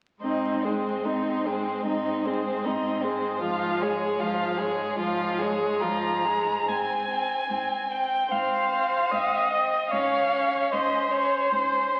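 At 0.2 seconds all four players of a string quartet enter together in a slow, lyrical romantic movement, cut from a longer piece, with a gently uneven, rubato pulse. The first violin carries the melody with a warm, expressive tone, sliding between notes with portamento and a smooth top, while the second violin sits close and clear beneath it in an even, steady second line. The viola, the loudest voice, fills out the accompaniment with a warm, smooth sound, and the rich cello holds a single low pedal note from a more distant place in the balance. The harmony rocks gently between a home chord and another chord built over that same bass, settling into a second section at 6.7 seconds that closes on a sweeter major-seventh colour. Every player bows with vibrato, and the quartet is wrapped in a wet recital-hall reverb and the crackle of a very old 78 rpm record, which gives the whole a hazy, nostalgic glow.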